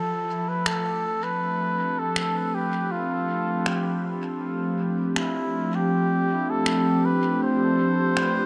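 Ambient dub at 80 BPM in 4/4 with a straight feel, this short excerpt, cut from a longer piece, sits in D dorian on a single Dm7 chord and feels spacious and hazy. A warbling, tape-like pad holds sustained chords between F3 and G4 throughout, its detuned sawtooth and triangle tones softened by chorus, a slow attack and a long release into a mellow, nostalgic lo-fi bed. Up front, a trumpet with a cup mute carries the melody from E4 to C5 in a veiled, classical-style solo voice with light vibrato and a smooth top, its phrases trailed by dub echo. Electronic finger snaps enter at 0.7 seconds and stop at 8.3 seconds, their produced, tape-warm sound re-recorded in a large room and also caught in dub echo. A huge ambient reverb with a 7.9-second decay wraps the whole hazy scene.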